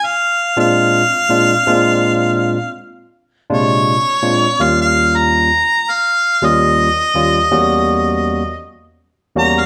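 Recorded live by a band in one large studio, this blues clip sits in a wet room reverb. At a soulful, swaggering 82 BPM in swung 4/4, a bright, overdriven harmonica carries the solo up front, punchy and pop-styled, with light vibrato and scooped notes. From 0.6 seconds, a barky, clean tine electric piano played through a combo amp accompanies over Bb7, then Eb7 at 4.6 seconds and Edim7 at 7.5 seconds.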